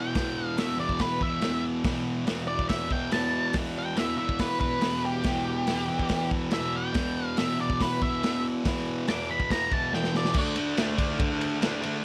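Garage rock with a gritty, swaggering attitude, this short cut from a longer piece drives along at 141 BPM in a straight 4/4, sitting in E minor. A bright, double-tracked fuzz guitar carries the riff up front, its picked, compressed tone ranging from E2 to D4. Above it, a dark octave-fuzz lead guitar plays the melody between G4 and D6 until 10.4 seconds. The acoustic breakbeat kit sounds crunchy yet smooth, with a punchy kick, a medium-tuned snare, dark cymbals and a rolled-off top, and it sits close in the mix. After a drum fill from 9.9 to 10.4 seconds, the harmony moves from E minor to D5, and the riff guitar carries on to the end at 12.0 seconds. Light reverb and small room ambience surround the band.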